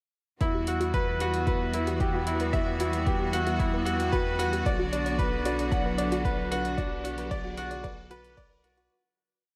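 Melancholic and moving, this short piano and strings electronica piece builds steadily, with a bright, worn concert grand up front playing a 12-step arpeggiated loop that drifts against the bar over clear, lightly vibrato string chords, a soft, dark pluck arpeggio with chorus, 12-bit grit and a filter sweep, a round sub bass holding the roots, an overdriven four-on-the-floor kick and restrained closed hi-hat, sidechain pumping on the strings, pluck and bass, and a very quiet riser entering at 4.3 seconds before the fade-out from 6.1 seconds.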